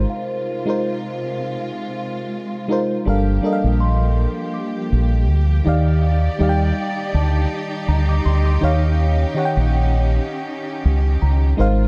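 This contemporary R&B excerpt moves at 81 BPM in 4/4 with a light 16th-note swing, and its mood is late-night and longing in a dark, warm studio production with reverb. An FM electric piano sits up front with a warbling, vintage tone, a fast attack and a noise layer. A deep dub fingered electric bass, round and punchy, anchors the low end. A studio string section holds lush, woody bowed chords with vibrato, while a celesta adds delicate, bell-like touches with tape echo from the background. The opening seconds form a break over an Ab6 chord, and from 3.1 seconds the harmony moves through Gm7, Ebmaj7 and Eb7.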